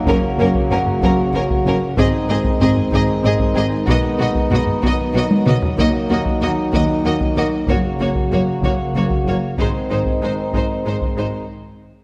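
Bathed in a wet scoring-stage reverb, this dramatic, epic orchestral film-score excerpt moves at 63 BPM in 6/8 over Gb, Ab, B and Ebm chords, with an up-front warm French horn section and a punchy, background trombone section holding sustained chords, a clear, lush violin section carrying the melody over a rich second violin line and a vibrato-laden viola accompaniment, very quiet bowed cellos and smooth-topped double basses anchoring the bass, and saturated, compressed taiko drums struck with heavy sticks, including a fill at 5.3 seconds before a break at 11.5 seconds.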